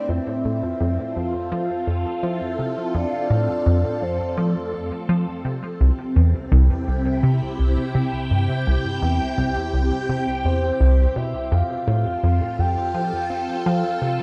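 A straight 4/4 pulse at 84 BPM drives this luminous, expansive slice of ambient, sequencer-driven space music in F major, anchored by a tight, up-front sequenced synth riff of detuned sawtooth and square waves with a plucky filter, chorus, phaser and tape echo. A swirling, vintage string machine holds bright, phased chords throughout, moving from F to C at 5.8 seconds and back to F. Meanwhile a soft, round octave-layered synth lead with sub-octave weight, vibrato, tremolo, tape echo and shimmer reverb carries the melody, resting between 5.4 and 10.4 seconds, all within a dark, warm production and a moderate plate reverb.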